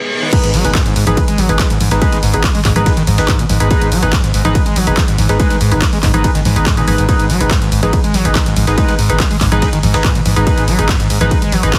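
A squelchy, distorted acid bass riff in G# minor drives this dark, industrial peak-time techno cut at 142 BPM, soaked in lush chorus and tape echo and pumping against a heavy, overdriven electronic kick that hits from 0.3 seconds after a brief break. Nasal, sync-swept polysynth stabs and a deep, saturated sub bass sitting in the background both breathe with sidechain pumping. An overdriven techno kit adds handclaps, hi-hats, ride, crash and toms, while a very quiet, dusty sampler-style kit contributes extra hi-hat and snare, all held on a single G#m chord in a dry, heavily compressed mix with a radio-like squeeze.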